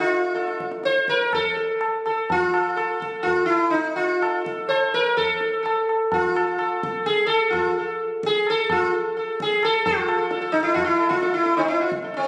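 This Hindustani classical passage, cut from a longer piece, carries a solemn, longing mood in a straight four-beat metre that gradually speeds up from start to finish. The sitar leads the melody between C4 and C5, its plectrum-plucked tone buzzing and shimmering with sympathetic strings, sitting round and up front in the mix. Tabla enters at 0.1 seconds, high-tuned with a short ring, close and dry, placed lower in the balance beneath the sitar. Around 9.8 seconds the music moves into a new section that carries through to the end at 12.3 seconds. The sound comes from a phone in the room, set in a moderate recital hall reverb with added studio reverb and compression.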